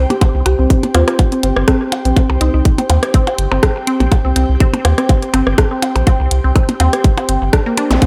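A round, deep analog bass and an airy, breathy pad with chorus and phaser open this quirky, sparse minimal techno excerpt, both pumping under sidechain, as a squelchy, resonant blip pluck riff with dub echo, a tape-warm garage kit of hi-hat and rim click, electronic percussion blips soaked in tape echo and a tight, up-front kick settle into a lightly swung groove, while a woody, mellow mallet-like pluck melody drifts in the background from 0.5 to 2.6 seconds and a brief electronic zap lands at 7.9 seconds in an echo-heavy mix with light digital reverb.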